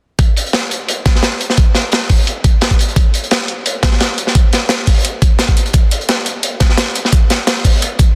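A dense, heavily limited master with a small-room ambience frames this lush, soulful drum and bass fragment, where an up-front, overdriven electronic kick knocks beneath a gritty, saturated breakbeat kit of hi-hat and medium-tuned snare with a rolled-off top, while bright, overdriven electronic hats sit in the background, the three drum parts playing together from 0.2 to 8.1 seconds with a light swing on the sixteenths.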